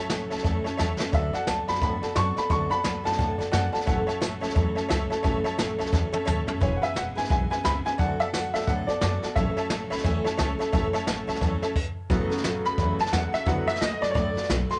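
Lightly reverberant and softly rounded at the top, this rowdy, rollicking swung rockabilly cut has a detuned, jangly honky-tonk upright piano and a bright, full-bodied picked dreadnought acoustic guitar, complete with finger squeak, comping over a growly, thumpy pizzicato upright bass and a roomy brush-played kit with dark cymbals and a boomy kick. A clear, boxy upright piano carries the high melody from 1.1 seconds, and short drum fills mark the phrases. After a brief stop at 11.8 seconds, the vintage honky-tonk piano takes a solo at 12.1 seconds.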